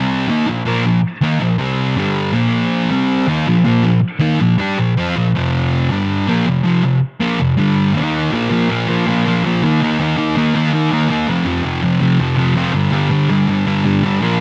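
The recording sits in a light reverb with a digital ambience, giving a raw, gritty rock cut from a longer piece a modest sense of space. A fuzz guitar plays alone for the full 14.4 seconds, double-tracked and up front, its distorted electric tone thick with fuzz. Picked at a brisk 161 BPM in a straight 4/4, the guitar ranges from F2 to G4 and moves through power chords: Bb5, C5, G5, F5 and Eb5. At 8.3 seconds the passage shifts into a new section that returns to Bb5 before passing through Eb5, F5 and G5. The result is a driving, stripped-down guitar statement with a slightly flat tuning of A4 = 439 Hz.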